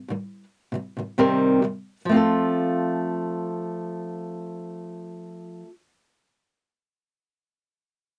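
A dry, close 1970s-style studio sound with a moderate booth ambience frames this short cut from a longer pop piece. A solo flamenco guitar sits up front, fingerpicked and boxy, with audible finger squeak as it plays at 64 BPM in F major with a light swing on the sixteenths. The opening slows down over Cm7 before settling onto F at 2.1 seconds, giving the brief passage a heartfelt, sunny mood.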